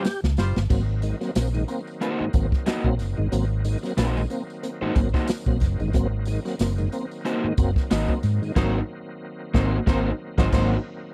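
Strutting and playful, this dry, close 1970s-style funk excerpt at 92 BPM swings on 16ths with a drum fill and band accent opening the first 0.7 seconds, as a punchy swinging big-band kit and a dark, round hollow-body bass sit up front beneath a crunchy overdriven guitar and tonewheel organ stabs with key click and slow rotary speaker, while a bright, shouting second organ holds sustained chords, a jingly tambourine stays in the background, and a tight, clear horn section returns for the closing accent at 8.6 seconds.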